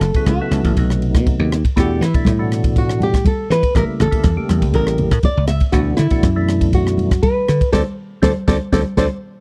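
A straight 4/4 groove drives this short, bright and soaring cut from a longer electric jazz fusion piece, with a crisp acoustic kit up front laying down punchy kick, high-tuned snare, rim clicks and dark ride cymbal in a polished, airy room. A dry, thumbed slap bass sits equally forward, its electric tone direct, growly and foam-muted. The fingerpicked flamenco guitar carries the melody in an upper register, woody and old-stringed, with a slapback echo trailing each phrase. Beneath it, a percussive tonewheel organ supplies mellow, round chords, lightly overdriven and colored by chorus vibrato and a slow rotary speaker. Congas join at 1.8 seconds with a thin-skinned, medium-tuned snap, and the band hits an accent at 7.7 seconds before the organ takes a fill from 8.2 seconds, all within a close, 1970s-style studio sound.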